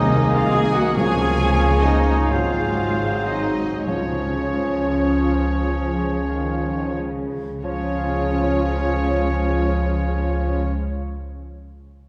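A dark double bass section sits up front with gliding portamento, anchoring this lyrical classical excerpt in 6/8 with a rubato feel that slows down through its first 7.6 seconds. Above it, a rich violin section carries the melody with vibrato, while a second, very quiet violin section, a bright and present oboe, a clear, roomy clarinet and a pure, hollow flute weave supporting lines. An expressive viola section and a distant cello section fill the background, a punchy bassoon adds accompaniment, a tight, mellow French horn section and a warm trombone section hold sustained chords, and a background trumpet adds mellow stabs on a single note. A fingerpicked concert harp spreads ringing arpeggios until 11.5 seconds, and round, soft-mallet timpani enter at 1.0 seconds. The harmony moves gently from Ab/C to Db, through Ab7, and back to Db, all set in a wet concert hall heard from further back in the room.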